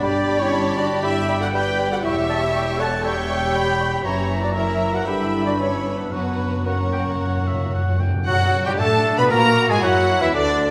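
Set in a reverberant recital hall, this urgent, dramatic classical-period orchestral excerpt moves at a quick 118 BPM in 4/4 with a flexible rubato feel, as a vibrato-rich chamber violin section carries the melody over G, F#7 and Bm/F# harmonies. A second, more focused violin section, a clear oboe, a close-miked clarinet and a pure, distant silver flute weave supporting lines, while a mellow bassoon and a lush viola section accompany, a French horn section holds sustained chords, and smooth cello and double bass sections anchor the bass. Hard-malleted timpani enter with an articulate fill at 6.1 seconds, and a roomy trumpet adds clear stabs from 8.3 seconds to the close.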